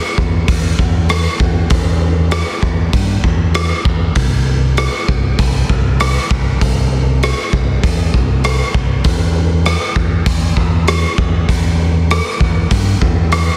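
At 0.2 s a growly, overdriven picked electric bass and a raw garage drum kit come in together, opening this excerpt from a brooding, angsty quiet-loud alternative rock piece in E minor. The tempo sits at 98 BPM in a straight 4/4, and the bass stays low, holding between C2 and G2 with an amped, bright and punchy edge. The acoustic kit sits up front with a punchy kick, hi-hat and rim clicks, its rolled-off top giving it a dark, smooth character in a bright stone room. Both parts play through to 13.5 s as a single unbroken section. The dry mix carries little reverb, and the master is dense and heavily limited in a modern style.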